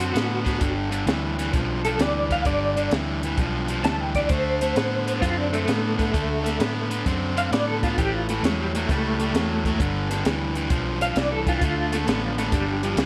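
A swinging 131 BPM shuffle in 4/4 drives this laid-back, swaggering electric blues, cut from a longer piece, with a compact cocktail kit of dark, smooth character (punchy kick, high-tuned snare, rolled-off top) and a round, foam-muted fingered bass holding the low end. Over a bright, overdriven stack guitar riff placed up front, a clean electric guitar solo runs the full 13.1 seconds through a small old amp, its slightly broken-up, lo-fi, compressed tone shimmering with tremolo. The changes move through D7, G7 and A7 before settling on D5 and G5 power chords, all under a light reverb.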